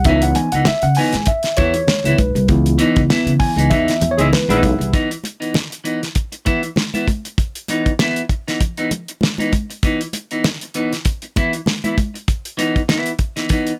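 A cool, driving funk cut at 98 BPM with a light 16th-note swing opens on a C#m9 with clean tine electric piano stabs taking a solo over woody pizzicato upright bass, a dry, up-front 70s drum kit with a fat snare and tight kick, twangy picked electric guitar, and damped congas sitting in the background. The band hits an accent from 2.5 s, a mellow, roomy horn section in octaves slips in at 4.2 s, and the piano, bass and horns drop out at 4.9 s as the harmony moves to Badd11/E. The drums, guitar and congas carry on under light reverb in this fragment of a longer piece.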